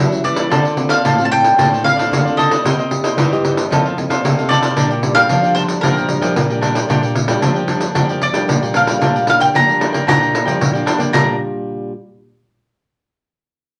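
A straight 4/4 samba-and-choro groove, sunny and playful, is driven by a jingly, up-front pandeiro played with soft hands, its sound vintage and band-limited. A woody, double-strung mandolin picks the melody over a crisp cavaquinho that joins at 0.5 s, while two nylon-string guitars sit in the background, one fingerpicked in a classical style as accompaniment and the other thumb-plucked with a deep, full-bodied bass. Cut from a longer piece, the passage moves through Dm7, Cm7, F7 and Bb6 in a club room with a wet reverb.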